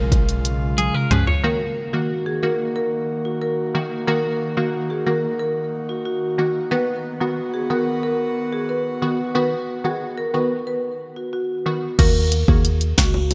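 Dancehall in Eb minor at 91 BPM, this straight 4/4 cut from a longer piece feels tough and sultry, with a bright 1980s-style digital sheen and a moderate plate reverb. An airy, breathy pad with chorus and sidechain pumping holds sustained chords from the start until 11.9 s, while a hollow, dark, organ-like FM bass, an electronic afro-pop kit with deep kick, sharp snare and crisp hats, and very quiet, round, low-tuned bongos frame the passage at the opening and again from 12.0 s. A short flash of twangy, clean electric guitar arpeggios with lush chorus sits over a drum fill near the top. Then a crisp, detuned wavetable chord stab with analog chorus and a moving notch carries the accompaniment up front, and a marimba played with medium mallets takes the melody through a digital delay. The harmony moves from Db to Ebm at 1.4 s and to B at 6.7 s before returning to Ebm.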